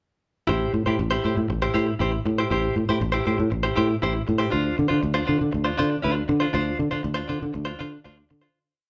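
From 0.5 seconds a round, dark fingered electric bass playing an octave disco line and a clean, compressed, direct-recorded electric guitar picking choppy sixteenth-note chords through harmonic tremolo drive this short, sultry 119 BPM disco groove in A minor, moving from Am7 to Dm7 in a moderately reverberant large studio with a band-in-one-room feel and a softened top end, before fading out from 6.5 seconds.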